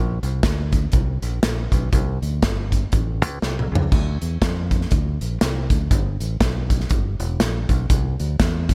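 The sound is dry and close, with little reverb, and both parts sit up front. This short uptempo gospel excerpt moves at 121 BPM in 4/4 with a swung eighth-note feel, and its mood is reverent and uplifting. A fingered electric bass opens at 0.0 seconds, direct and warm, moving in a low register between E1 and F2. An acoustic studio drum kit joins at 0.2 seconds, with a punchy kick, a medium-tuned snare, hi-hat, splash cymbal and toms, all carried by a pumping room sound. A drum fill lands at 3.4 seconds, and the pair carries the groove through to the cut.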